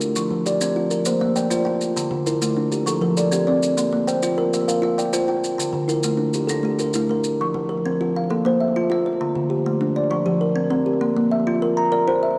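A bright, ringing kalimba plucked with the thumbnail leads this rippling, warm excerpt, its woody, hollow-box tone sitting mid-forward and up front as it spins arpeggios from D3 up to Bb5. A second kalimba, mellow and soft with a solid-board body and short fingertip plucks, weaves its own arpeggios alongside it through a tape echo, the two forming an interlocking cycle in the southern African mbira tradition. Set in F major at 133 BPM in a straight 12/8 feel, the harmony circles through F, Bb and Dm. Grainy, close and dry maracas add a gentle acoustic shimmer until 7.4 s, when the music moves into a second section carried by the two kalimbas alone until 12.4 s. A wet echo-chamber reverb with a studio-ambience sheen surrounds the whole performance, which is cut from a longer piece.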